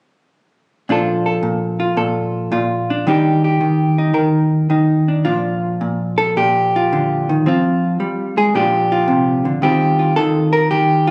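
Solo jazz for hollow-body electric guitar, playful and gently swung with a rubato looseness, heard in a short passage lifted from a longer performance. The clean, picked guitar sits up front with a dark tone, moving through rich major-seventh and sixth voicings, and it shifts into a new section at 5.3 seconds before reaching its last chord at 9.6 seconds. Captured on a phone in the room, it carries a light club reverb that gives the sound an in-room feel.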